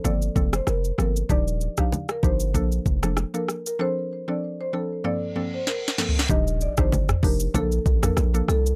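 Hypnotic and sultry, this short afrobeats cut from a longer piece moves at 96 BPM in G minor with a gentle swing on the sixteenths. A produced electronic afro-pop kit sits up front with a knocking kick, sharp snare and smooth hats, alongside rim clicks, shaker and toms, while a punchy, heavy 808-style bass with a sine core, a noise layer and a fast, decaying attack anchors the low end. A round, mellow FM synth pluck with a chorus effect outlines chords from Gm11 through Ebmaj9, Bbmaj7 and Dm7. Above it, a woody rosewood marimba played with medium mallets carries the melody through a delay. Very quiet, close and dry acoustic congas and bongos add bright detail. A reverse cymbal rises in the background from 5.4 seconds, a drum fill arrives at 5.7 seconds, and an electronic impact lands at 6.3 seconds as the next section begins, all in a dry mix with little reverb.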